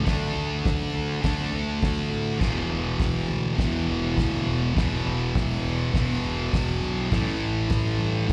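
Heard from the floor of a live gig through the venue's PA, this short fragment of a gritty, raw garage rock set carries a light reverb with the tail of a recital hall around it. Out front sits a thick, bright fuzz guitar, double-tracked and picked, playing a distorted riff built on D5, E5 and A5 chords across a straight 4/4 pulse. Beneath it, a fingered electric bass comes through direct and amped, round and overdriven, adding a dark, fuzzy floor to the low end. A cloth-damped, thuddy drum kit joins at 0.1 s: dry and smooth, with a fat snare, a tight kick, dusky cymbals, hi-hat and crash, and a rolled-off top. The whole thing lasts about 8.3 seconds, caught mid-song as one unbroken section.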